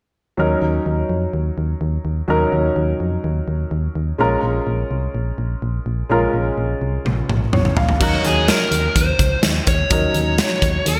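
A moody, nostalgic 1980s-style pop excerpt in Eb minor opens at 0.4 s with a warm baby grand piano carrying the accompaniment, touched by a subtle chorus, alongside a punchy, round FM bass with a fast attack and dark, decaying notes. At 126 BPM in a straight 4/4, the harmony moves from Ebm7 to Bbm7 and back to Ebm7. A big rock drum kit arrives at 7.1 s with a drum fill, its punchy kick, medium-tuned snare and bright cymbals treated with gated reverb. At 8.0 s a smooth, overdriven electric lead guitar takes the melody with a dark, picked tone in a compact upper-middle range. The bright digital production sits in a moderate, lush hall reverb, with every part placed up front, and the passage is cut from a longer piece.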